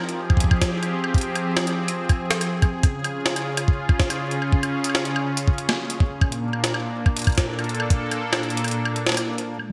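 IDM at 142 BPM in a straight 4/4, this glitchy, eerie excerpt is cut from a longer piece and runs on a single section. A smooth, detuned sawtooth pad with a soft attack holds sustained chords from the start, moving from Fmadd9 to C# at 2.8 seconds and A#maj7 at 6.2 seconds, coloured by chorus, tremolo and a vintage 12-bit sampler grit. A pitched-up, jungle sampler-style kit of hi-hat, high-tuned snare and woodblock enters just after, compressed and up front, with low-pass filtering on its hats, snare and percussion and a gated reverb tail. An electronic kick, thumpy and tape-warm, sits louder than the other parts with its own studio reverb, and it drops out at 8.8 seconds, leaving pad and kit to carry the final moments. A lush hall reverb of moderate size and a bright, 1980s-style digital production give the whole an eerie sheen.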